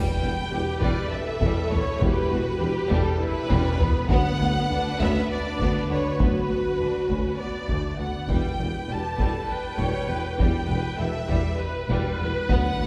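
In a 7/8 at 200 BPM counted in eighths, this heroic, epic orchestral film cue opens on a huge, bright impact, with a taiko ensemble entering at 0.8 seconds to pound with heavy sticks alongside it. Lush bowed violins carry the melody with a focused, vibrato-rich top over a second violin line and expressive viola accompaniment with portamento, while a rich double bass section, a very quiet cello section and a mellow, distant tuba anchor the low end. A dark, soft-edged French horn section sustains chords through the Em to Bm/D progression, all set back in a concert hall's long, wet reverb.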